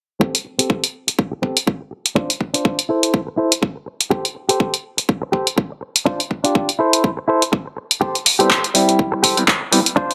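Filtered disco house at 123 BPM in A minor, this short groovy, sensual excerpt rides a swung sixteenth feel over a loop of Am7, Dm7 and C6 chords. A bright, twangy clean electric guitar, recorded direct and compressed, plays a picked riff between C4 and C5, pumping against the sidechain and running through a low-pass filter. Underneath, a layered electronic kick with a punchy, tape-warm character sits up front, high-pass filtered and re-recorded in a small room. A punchy analog drum machine supplies handclaps and hi-hats, its hats pumping with the sidechain, and it sits as the loudest element beside the light reverb. Near the end, at 8.4 seconds, a stringy, percussive clav played through a combo amp slips in with a brief accompaniment, colored by phaser, sidechain pumping and a low-pass filter, while a filter sweep runs across the whole passage.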